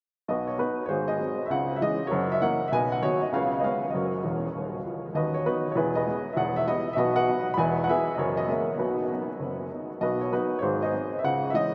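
A clear, woody upright piano plays solo stride jazz in B major at a swinging, exuberant 197 BPM, its polished, up-front sound ringing through a huge, wet reverb that evokes a vast, echoing space, with a fill at 4.2 seconds, in a short excerpt cut from a longer piece.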